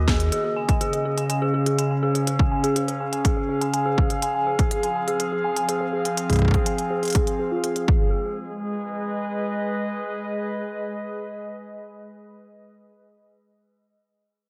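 IDM at 123 BPM in G# dorian, eerie and cerebral, cut from a longer piece and set in an echo-heavy mix with light reverb. A warbling, nostalgic tape-like pad holds detuned sustained chords with a slow attack throughout, while a dark, inharmonic FM synth bell plays arpeggios through chorus, phaser, 12-bit sampler grit and dub echo under a filter sweep, moving over C#, Fm and G#m. A heavy, up-front electronic kick and an industrial kit of clanging snare and crisp hats drive the opening until about 8.0 seconds, the bell drops out shortly after at 8.3 seconds, and the pad carries on to 12.6 seconds.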